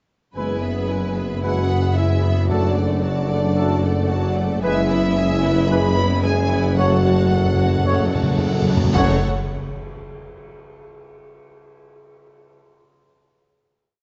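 A straight 4/4 pulse at 112 BPM drives this heroic, dramatic orchestral film cue in F# minor, where lush, vibrato-rich violins carry the tune doubled at the octave while a second violin line and a distant viola section rock a two-note figure over chords moving from E/F# through D/F# to F#m. Beneath them, a rich bowed double bass section, expressive cellos and a soft, roomy tuba hold a sustained F# bass, as French horns sing a background melody, very quiet trombones add sustained and accented chords, and a dark trumpet section punches short stabs. Close, dry timpani struck with hard mallets enter at 2.5 seconds and return with a rolling fill at 6.8 seconds, and a huge cymbal swell leads into a low impact and final chord at 9.0 seconds, all bathed in a wet scoring-stage reverb and a mellow, darkened production.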